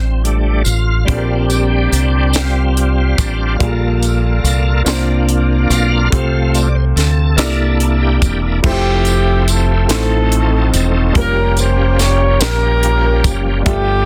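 A bright, shouting tonewheel organ with key click and slow rotary swirl takes the lead from 0.0 seconds over woody upright piano accompaniment, a deep, round dub bass and a tight, dry funk kit with jingly tambourine, setting an uplifting, soulful slow gospel groove in 6/8 at 48 BPM in F major until mellow jazz horns take up the melody at 8.7 seconds, all in a close, dense and heavily limited modern mix cut from a longer piece.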